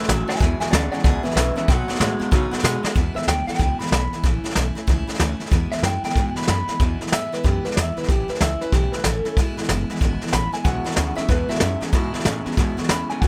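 Rockabilly in an upbeat, rollicking mood at a swung 187 BPM in E mixolydian, where a twangy, lo-fi electric guitar with tape echo carries the melody over a jumbo acoustic guitar with bright, full-bodied picking and finger squeak, a thumpy, woody pizzicato upright bass and an up-front vintage brush kit with a punchy kick and rolled-off top, while a slightly broken-up, compressed second electric guitar plays a riff that drops out after 2.9 seconds and returns at 10.6 seconds, a drum fill at 2.8 seconds closes the opening clean guitar solo, and the room sound stays dry.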